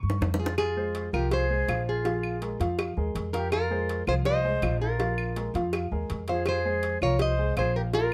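Nostalgic yet danceable, this short slice of Cuban son and guajira opens on a quick drum fill before a dark, mellow grand piano spins arpeggios over a thumpy, gut-strung upright bass sitting up front. Tight, high-tuned bongos and cowbell played with hard hands join almost at once, and at 0.4 seconds a fingerpicked nylon-string guitar takes the melody, bathed in plate reverb, while an airy, straight-toned silver flute traces a second line. Woody claves click in the background from 0.6 seconds as the harmony moves between F minor and B-flat, all in a moderately reverberant studio room.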